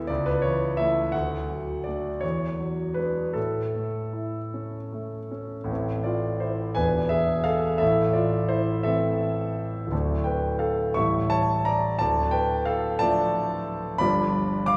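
Passionate and lyrical, this romantic classical character piece for solo piano moves in a rubato 6/8 at roughly 50-61 BPM, cut from a longer work. The grand piano sounds clear, intimate and up front, with its action noise audible, and it ranges from D1 to D6, turning from A major to A minor at 5.7 s, where chords such as Am, E7 and A7 lead toward Dm and a G7 at 14.0 s. A wet concert hall reverb with an RT60 of 1.8 s surrounds the natural piano tone.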